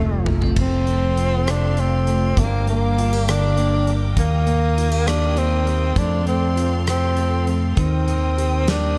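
A breathy, whispered tenor saxophone with vibrato and scooped notes carries the melody up front over a round electric bass in this tender, romantic six-eight pop ballad at 67 BPM, opening with a drum fill from a huge arena kit with a fat snare, as a twangy twelve-string electric guitar, a fingerpicked jumbo acoustic guitar from 0.6 seconds and a lush bowed string section sit in the background of an echo-heavy mix moving through F, Gm and Eb.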